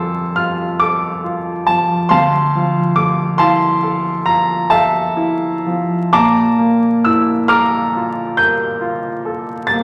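A clear, intimate baby grand sits up front in a wet recital hall, its natural tone trailed by a reverb tail and overlaid with vinyl crackle, while the noise of the piano's action stays audible beneath the notes. This is an impressionist classical miniature for solo piano, cut from a longer piece, hazy and mysterious in mood. The playing moves in a lilting triple-grouped metre with a free, rubato feel, spanning the instrument from deep bass to bright upper treble. The harmony drifts from Fmaj7 to Dm9 at 2.1 seconds, then settles on a shimmering Bbmaj7#11 at 6.1 seconds, leaving the colours suspended and unresolved. The whole passage lasts just under ten seconds.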